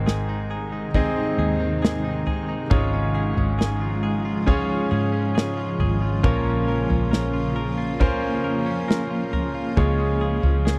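A bright grand piano, with audible action noise up front, opens this heartfelt, hopeful pop ballad at a slow 68 BPM in Db major, joined at once by twangy, compressed arpeggios from a direct-recorded clean electric guitar and a dark, foam-muted fingered electric bass. A natural country drum kit enters at 0.1 seconds with a punchy kick, medium-tuned snare and toms, and a cloudy, evolving granular pad drifts in at 0.2 seconds with its own built-in reverb. The chords move from Ab through Db/Ab and Bbm before landing on Db, all captured in a dry, close 1970s-style studio sound with a small room reverb and a faint mains hum.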